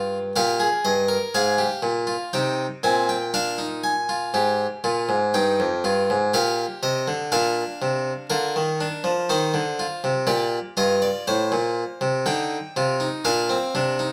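A solo French-style harpsichord, nasal and bright with a thin, plucked edge, sits up front in a moderate stone-room reverb as it plays a solemn, contemplative baroque-style three-part fugue in a 14.1-second passage cut from a longer classical piece.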